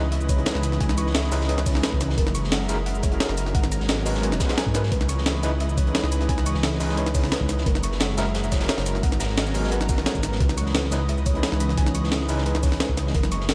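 A deep, rumbling detuned saw bass sits up front in this melancholic, soulful liquid drum and bass excerpt, under a gritty, pitched-up sampler-style breakbeat and thumpy electronic kick, a dark, saturated acoustic break tucked in the background, a barky overdriven tine electric piano with tremolo and diffuse delay, a lush, warbling chorused pad pumping to the sidechain, and a round, tine-like thumb-piano-style pluck with 12-bit grit tracing arpeggios over C#m9, F#9 and G#m11 chords.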